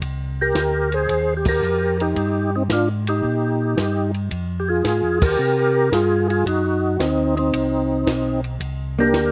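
Swinging at 112 BPM in 4/4, this soulful, smoky soul jazz organ trio in C minor sets a compact cocktail drum kit with dark cymbals, a high-tuned snare and a punchy kick under a round, mellow tonewheel organ bass with key click and slow rotary speaker, while a lightly overdriven, percussive tonewheel organ carries the melody from 0.4 seconds with chorus vibrato and slapback echo over Cm9, Fm9, D13b9 and C7sus2, band accents punctuate the groove, and a clean, picked, compressed hollow-body jazz guitar slips in at 9.0 seconds, all in a dry sound.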